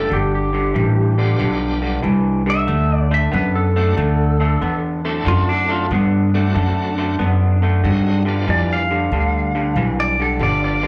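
Rollicking yet laid-back, this electric blues shuffle at 93 BPM in D mixolydian swings over G7 and D7 as a clean, twangy lap steel takes a slide solo with volume swells and slapback echo, backed by a shouting, lightly overdriven tonewheel organ with key click and a slow rotary speaker, a slightly broken-up, lo-fi electric guitar riff, and a woody pizzicato upright bass sitting up front, all heard as a live club gig through the venue's PA.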